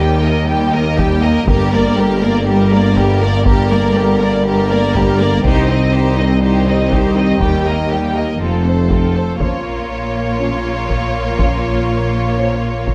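A lush, warm violin section carries the melody in this heroic, dramatic excerpt of epic orchestral film score at 121 BPM in 4/4, with a clear second violin line and rich violas beneath, while dark French horns hold soft-edged sustained chords in the background. Bowed cellos and double basses, smooth and full of vibrato, anchor the bass alongside a mellow, distant tuba that drops out at 9.2 s, and a taiko ensemble played with heavy sticks, close and dry, enters at 1.0 s. The harmony shifts from G minor into Bb minor at 9.4 s, and the orchestra sits in a moderate scoring-stage reverb.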